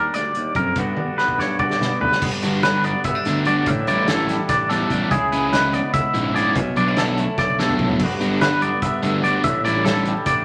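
Math rock with a midwest emo lean, this bright, intricate excerpt runs at 291 BPM counted in eighths, in a straight 7/8 and G lydian, cut from a longer piece. Two clean, twangy electric guitars open together, one picked and up front playing accompaniment, the other fingered and shimmering with tremolo as it spins high arpeggios over chords like Ebmaj7, Gmaj7 and A7sus4. A loose indie drum kit sits distant and roomy, with dark cymbals, a fat snare and a tight kick, throwing in fills at 1.0 and 7.4 seconds. A fuzzed, overdriven fingered bass enters at 0.6 seconds, punchy yet tucked in the background. At 2.4 seconds a crunchy, double-tracked overdriven guitar arrives up front with a riff that drives the second section through C#m7 and Bm9. Moderate studio reverb and a layer of vinyl crackle give the sound a lived-in, slightly aged surface.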